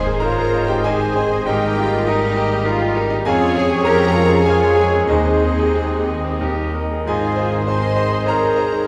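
Lyrical and passionate, this classical passage in Ab major moves in a rubato 3/4 at around 90-103 BPM, led by a brilliant concert grand piano placed up front with deep bass and long sustain. A lush orchestra surrounds it: a distant violin section shares the melody while a second violin line, a pure-toned flute group, a bright clarinet and a smooth-topped cor anglais weave supporting lines, violas accompany, and mellow trombones and French horns hold sustained chords under soft, dark trumpet stabs. Rich bowed double basses and a focused cello section in the background anchor the bass, all set in a wet concert hall reverb with a dark production.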